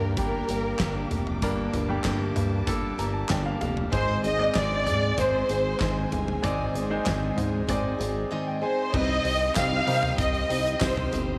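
Cut from a longer piece, this driving, dramatic piano-driven pop passage at 96 BPM opens with a lush, up-front violin section carrying the melody over clear, polished grand piano accompaniment with brief fills, a bright, full-bodied picked steel-string acoustic guitar riff, a glossy, retro chorused synth bass and a very quiet string section sustaining chords; a huge arena drum kit with a fat snare, punchy kick and handclaps joins at 0.2 seconds, and a jingly tambourine slips in at 9.6 seconds, set in a moderate spring reverb as the harmony moves from G minor through A-flat to C minor.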